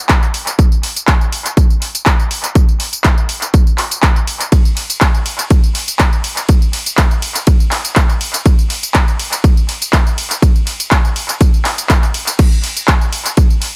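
Funky and sensual, this short house drum excerpt pairs a punchy, overdriven electronic kick sitting up front with a layered, gritty house kit of handclaps, hi-hat, tambourine, ride and crash whose hats, cymbals and percussion pump with sidechain compression and trail analog delay echoes, the whole mix dry on reverb yet heavy with echo and carrying a large-room character.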